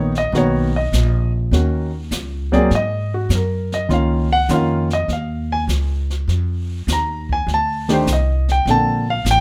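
Jazz piano trio excerpt at 101 BPM in a moody, swinging 4/4: a warm, up-front concert grand piano carries the melody across the whole 9.4 seconds with deep bass and short sustain, over woody, growly pizzicato upright bass and a brushed kit with a boomy kick entering at 0.1 seconds, all in light reverb as chords move from Bmaj7 through Gb69 and F13 to Bbmaj9.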